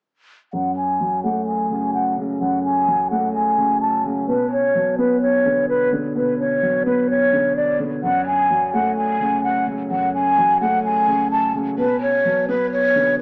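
A small-speaker sound and an echo-heavy mix, bathed in moderate spring reverb, set a murky, menacing tone for this cut from a longer hip hop piece in F# minor. At 128 BPM in 4/4 with a half-time feel, the music moves with a heavy, melancholic weight. A breathy, mellow concert flute carries the melody from 0.5 to 13.2 seconds, close-miked and up front with a hollow, straight tone and soft attack. Beneath it, a felt-muted upright piano plays accompaniment across the same span, dark and boxy with thick felt and audible action noise that lends an intimate, muted quality. Both parts pass through a low-pass filter and dub echo, and a filter sweep runs throughout as the harmony alternates between F#m and Bm.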